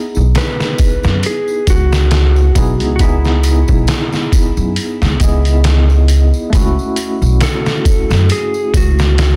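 A tine electric piano opens this smoky, cinematic trip hop fragment in C# minor, its clean tone heard through built-in speakers and colored by tremolo and tape echo. Within the first second a bright acoustic tambourine sits softly in the background, a woody pizzicato upright bass with steel strings arrives up front, and a sampler-style drum kit comes in with a thumpy kick, a medium-tuned snare and hi-hat, sounding compressed, pitched down and gritty after being re-recorded in a large room. At 0.4 seconds a clean electric lap steel guitar takes the melody, dark and compressed, slide lines played with fingerpicks and trailed by tape echo. The groove moves slowly at 68 BPM in 4/4 with a light swing on the sixteenths, resting on C#m7 before shifting to F#m7 at 6.5 seconds. Digital ambience surrounds the parts, and the dense, heavily limited master keeps the bass and drums prominent in this brief cut from a longer piece.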